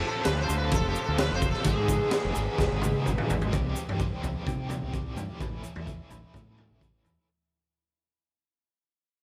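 A gritty, up-front garage drum kit with a boomy kick and high-tuned snare drives this trippy, hypnotic psychedelic rock fragment at 128 BPM, rolling through a drum fill before the fade-out that begins at 3.5 s. Underneath, a growling overdriven bass and a biting, double-tracked guitar riff with tremolo hold the groove, while a grainy egg shaker sits in the background. A buzzing, shimmering sitar melody trails diffuse delay until 3.0 s over mellow, organ-like sustained chords moving from F to G#m, all soaked in a huge, dreamy reverb.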